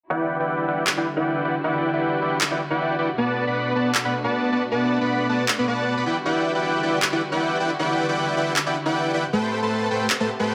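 Future bass with a lush, bittersweet mood and a swung half-time feel, cut from a longer piece, built on a huge, detuned supersaw riff that sits up front with a dub echo and a filter sweep across the whole passage. Behind it, a rich studio string section holds smooth, bowed chords with light vibrato, its own filter sweep running alongside. Layered electronic handclaps enter at 0.9 seconds in a small room, and the whole mix is set in a moderate digital reverb.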